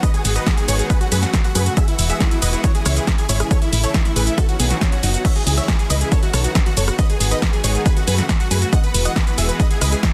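Uplifting trance in a euphoric, soaring mood, cut from a longer piece. A huge, detuned supersaw lead carries the melody with delay and sidechain pumping, while a catchy plucky unison lead with a filter sweep plays a second line in the background, above a lush, chorused pad of sustained chords and a round, dark FM bass up front. An overdriven, dry electronic kick and a punchy analog drum machine with snare, hi-hat, rim click, shaker and crash cymbal drive the dense, heavily limited mix, and an electronic swell enters in the background from 4.5 seconds.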